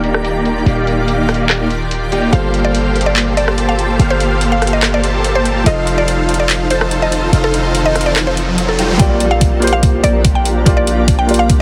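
A huge, detuned supersaw riff stands up front in this dreamy, emotional half-time future bass excerpt, its sound pushed through a filter sweep and sidechain pumping. Beneath it sit a soft, felt-muted upright piano, a shimmering, ethereal pad in the background and a deep, boomy 808-style bass, each also pumping to the sidechain. A woody, round mallet-like synth pluck carries the melody from 2.3 seconds with chorus and dub echo over a trap kit of handclaps, metallic hi-hats and rim clicks, and a background riser from 7.1 seconds leads to a knocking, layered electronic kick that arrives at 9.0 seconds for the build-up, all within a heavily compressed, radio-like mix with light reverb.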